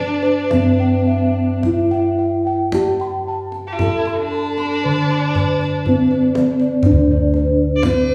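A soft, ringing bronze metallophone carries the melody with a shimmering, paired-tuned glow, while a rich, smooth violin with vibrato adds a second line above deep, close kendang drumming that enters at 0.2 seconds. Beneath them, round, full bossed gongs hold the bass and a darker metallophone and mellow gongs spin quiet arpeggios in the background. This serene, ceremonial Javanese gamelan excerpt moves at a slow 52-61 BPM in D slendro, set in a large studio reverb, and shifts into a new section at 6.9 seconds.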